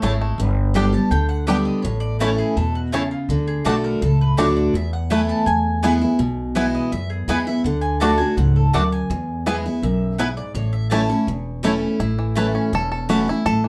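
A bright, full-bodied steel-string acoustic guitar sits up front in this driving, lively bluegrass passage, picked as accompaniment from a dreadnought body with audible finger squeak. Beneath it, an upright bass, also up front, plays pizzicato on gut strings with a thumpy, dark tone. Two mandolins share the upper range: one carries a melody with a round, double-string sound, while the other adds woody picked stabs. A twangy, percussive banjo played with fingerpicks also plays melody, and after the melody mandolin stops at 11.9 seconds, the banjo takes a short solo from 12.0 seconds to the end. The harmony moves through G, A, D, Esus4 and E in a straight 4/4 feel, set in a moderate studio room and cut from a longer piece.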